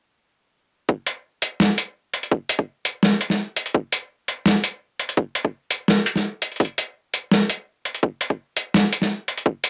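Tense and spacious, this short cut of half-time drum and bass pairs a hard-clipped, tape-warm electronic kick drum, high-pass filtered and up front from 0.9 s, with a gritty, overdriven boom bap sampler-style kit of hi-hat and medium-tuned snare entering at 1.1 s, all set in a modest booth ambience with the character of a home cassette recording.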